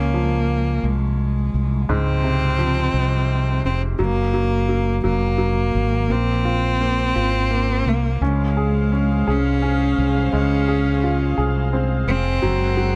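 A lilting 6/8 sway, counted in slow dotted-quarter beats, carries this heartfelt, romantic pop passage, cut from a longer piece. A single up-front bowed cello sings the melody with a rich, smooth, even tone and gentle vibrato, heard close. Beneath it, a clear upright piano plays the accompaniment with a woody, natural sound, its action noise audible. A mellow, dark, round fretless electric bass sits prominently in the mix, treated with an ensemble chorus. At 8.2 seconds a warm studio string section joins with sustained chords, its gut-string, reedy, period-style tone lending a soft glow behind the cello. Light small-room reverb keeps the whole performance feeling close and personal.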